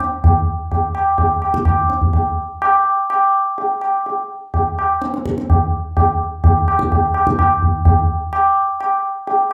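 A straight 3/4 pulse at 126 BPM carries this introspective, solemn Indian classical fragment, cut from a longer piece, where a low-tuned, ringing acoustic tabla sits up front yet sounds distant within a large room, played live and bathed in wet studio reverb with an RT60 of 0.8 s, as the music moves into a new section at 6.0 s before the clip closes at 9.5 s.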